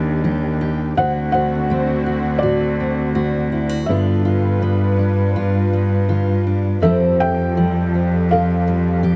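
Nostalgic and hopeful, this acoustic folk-pop ballad moves at an unhurried 82 BPM in a straight 4/4. A fingerpicked steel-string acoustic guitar with a full-bodied jumbo tone carries the accompaniment from the start, its finger squeaks audible, while a single bowed cello sits up front as the bass, played sul tasto with light vibrato and a soft attack. Behind them, a vintage analog pad holds sustained chords with a detuned, warbling sawtooth shimmer and chorus, set low in the background. At 1.0 s a felt-muted upright piano takes the melody, its dark, mellow tone carrying audible action noise from the thick felt. The harmony drifts from Ebmaj7 through D7 and G7 to a closing Fmaj9, and close, detailed microphones with light reverb keep this short excerpt intimate.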